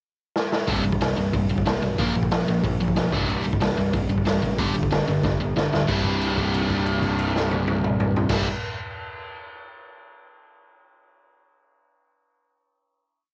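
Straight, fast 4/4 punk rock drives this short, rebellious and upbeat home cassette recording: a raw garage drum kit with a boomy kick and gritty, saturated small-room sound opens with a fill at 0.4 seconds; a biting overdriven guitar up front and a very quiet hollow-body overdriven guitar both play palm-muted eighth notes through C5, Bb5 and G5 power chords; a growly fuzz bass drives eighth notes from the background; and after a second drum fill the band lands on a held C chord at 5.9 seconds that sustains to the close under light reverb.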